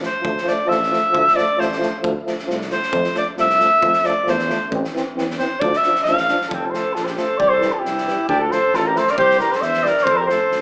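An up-front alto saxophone with vibrato carries a restless, bittersweet solo over a swung Balkan brass band groove, and a punchy flugelhorn takes the melody from 6.5 s as the music moves into F major for the second section. Beneath them a mellow trombone, a background euphonium and a smooth-topped tuba hold the accompaniment and bass, while a loose acoustic kit adds a fat snare and tight kick with a gritty, saturated edge. The band plays live in one room with a moderate studio reverb, a small-speaker sound and a faint mains hum, in a passage cut from a longer piece.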